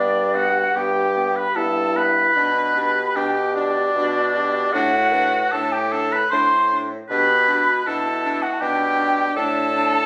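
Classical slow romantic movement for wind quintet in triple time, serene and warm, with rubato and uneven beats, cut from a longer piece. An airy silver concert flute with vibrato and a soft attack carries the expressive melody over a clear, up-front oboe second line, while a bright clarinet sits in the background and a close-miked French horn with vibrato fills out the accompaniment above a bassoon bass with light vibrato and a smooth top. The sound was captured on a phone in the room, with club reverb and compression.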